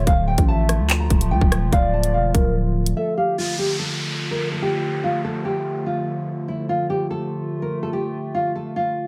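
Dark and cold, this half-time drill fragment sets a full-bodied, thumb-plucked nylon-string guitar melody over a warbling, lo-fi tape-like pad, joined at first by a hollow, woody clarinet-like synth lead with chorus and tape echo, a growling 808-style bass and an up-front drill kit of hard-clipped kick, bright hats, handclaps and rim clicks, before the drums drop out at 3.0 seconds and an electronic downlifter enters at 3.4 seconds while guitar and pad continue.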